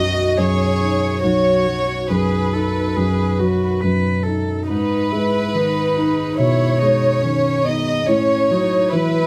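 A dark grand piano sits up front, its mellow, worn and boxy tone ringing with long sustain as it carries the accompaniment low in the register. Above it, a chamber violin section carries the melody in a close, intimate voice, bowed sul tasto with a soft attack, light vibrato and a smooth top, bathed in plate reverb. A single cello plays a second line beneath the violins, its airy, sul tasto bowing giving it a gentle, breathy warmth. This neoclassical piece for piano and strings moves in a loose, rubato 4/4 with a longing, melancholic mood. The harmony drifts from B to G#m and then to F#m7/A. The three parts play together throughout this 9.3-second cut from a longer piece, set in a moderate studio room.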